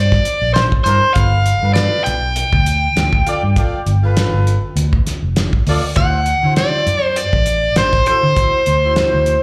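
Straight-eighth soul blues at 100 BPM in G mixolydian, soulful and laid-back and heard live through a club PA: a biting overdriven guitar with slapback echo carries the melody up front over a dark, round, foam-muted fingered bass and a cloth-damped, thuddy drum kit with a fat snare and tight kick, while a smooth-topped jazz horn section with light vibrato enters at 0.9 seconds holding sustained chords across C9, G9 and D9 harmony.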